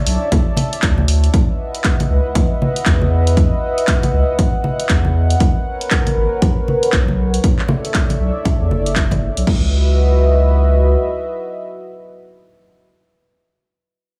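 Lightly reverberant, this deep, late-night deep house excerpt at 118 BPM, with swung sixteenths, puts a round, dark analog bass and a dry, punchy electronic kick up front, while an analog drum machine's handclaps, hi-hat and crash and bright acoustic congas sit beneath a smooth, chorused sawtooth pad of mostly rootless minor-eleventh chords that pumps along with the bass and holds on after the drums stop at 9.6 s and the bass ends at 11.0 s.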